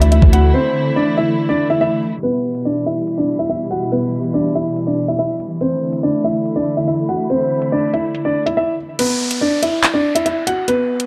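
Cold and menacing, this drill hip hop excerpt in E minor moves at 142 BPM with a half-time feel. A dark, mellow concert grand piano carries the melody from start to finish, intimate enough that its action noise is audible, while a bowed studio string section played sul tasto holds soft-attack chords with light vibrato until 9.0 seconds. A growling, buzzy 808-style bass hits only briefly at the opening, its saturated, fast-attack tone decaying before a break that runs to 2.2 seconds. The electronic drum kit sits up front with a knocking kick, handclaps, crash cymbal and tape-warm hi-hats, and a filter sweep runs through the middle stretch as the harmony moves from Dsus2 to E minor and back. At 9.0 seconds the kick is muted and an electronic downlifter enters over a bare E5 chord, all within a dark, low-passed production with light reverb.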